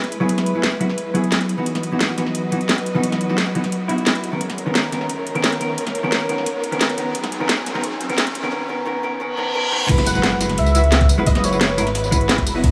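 A straight 4/4 liquid drum and bass groove opens this excerpt, carried by an up-front garage kit with a cracking snare, metallic hats, tambourine and crash in a small-room ambience. The mood is soulful and melancholic. Muted, con sordino strings hold veiled, bowed chords that pump with sidechain, while a clean, picked hollow-body jazz guitar sits up front with dub echo and a deep, rumbling detuned saw bass beats beneath. Through a long build-up with a filter sweep, faint risers and a reverse cymbal gather as the chords move from F#9sus4 through C#m11, Bmaj9 and Emaj9. At 9.9 seconds the drop lands with an impact, a thumpy, gritty pitched-up kick and a very quiet, saturated breakbeat kit with a rolled-off top. From 10.1 seconds a velvety sawtooth synth lead with chorus, phaser and dub echo carries the melody until 12.0 seconds as the harmony returns to F#9sus4.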